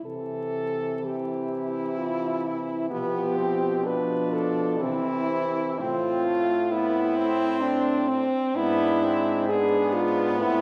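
Heard from further back in a wet, reverberant hall with a faint vinyl crackle, this lyrical, warm classical fragment for horn quartet unfolds in a gently swaying three-beat rubato. Three mellow French horns carry the bass, the melody and the accompaniment, all with light vibrato, and a clear, soft-attacked fourth horn joins with a second line at 1.0 seconds. Together they move through unhurried harmonies from C through G7/B and Am to a closing E7/G#.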